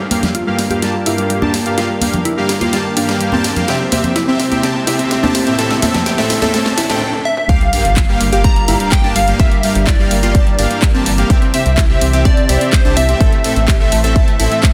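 Emotional, bittersweet progressive house at 126 BPM in G dorian, cut from a longer piece, where a glassy wavetable pluck arpeggio with dub echo and a filter sweep builds over a lush, very quiet pad, smooth supersaw stabs up front, a round analog bass, ringing congas until 6.5 s, a riser and sub drop, and a pop drum kit with a fat snare. A catchy phased unison lead slips in at 7.3 s, just before the drop at 7.5 s brings in a punchy electronic kick and a faint second pluck line, all bathed in a lush hall reverb with sidechain pumping on the pluck, supersaw, bass, congas and lead, and a dense, heavily limited master.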